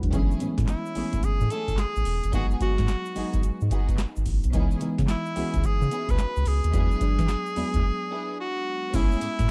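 Bouncy and slick, this dry, dark new jack swing excerpt rides a booming analog drum machine with a deep kick, tonal snare, metallic hats and handclaps up front, a round sawtooth-and-sine analog bass, a mellow FM electric piano shimmering with chorus and phaser, a grainy tube shaker in the background and distant, lush string stabs, while a breathy, intimate tenor saxophone carries the melody from 0.7 seconds and a break arrives at 7.8 seconds.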